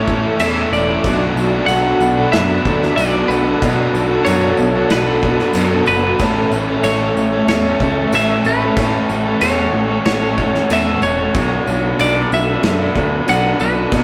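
A bright, twangy twelve-string electric guitar carries the melody from the very start, ringing over a warbly, nostalgic pad of detuned sustained chords that sits in the background with chorus and its own reverb. This is a blissful, dreamy shoegaze and dream pop cut, taken from a longer piece, moving at 93 BPM in a straight 4/4 and circling between A and Bm7. Two overdriven guitars play riffs underneath: a hollow-bodied semi-hollow guitar up front and a biting one tucked further back. A picked electric bass, warm and direct, holds down the low end. At 0.1 seconds a loose indie drum kit joins with punchy kick, medium-tuned snare and crash cymbal in a pumping small room, along with a jingly tambourine deep in the mix. The whole track sits in a wet stone room reverb with the rough, live character of a rehearsal-room recording.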